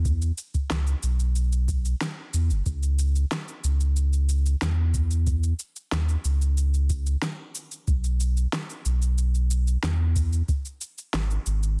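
A straight 4/4 pulse at 92 BPM carries this wistful sunset chillout excerpt, with a dry, analog-style electronic kick anchoring the beat until 10.6 seconds. A layered electronic cabasa and fat, overdriven snare ride lower in the mix, while a round, mellow sine sub bass sits up front, moving between F#1 and E2 with a fast attack and sustained, deep notes. The sound is close and nearly free of reverb, finished with a dense, heavily limited modern master that keeps the mood warm and intimate.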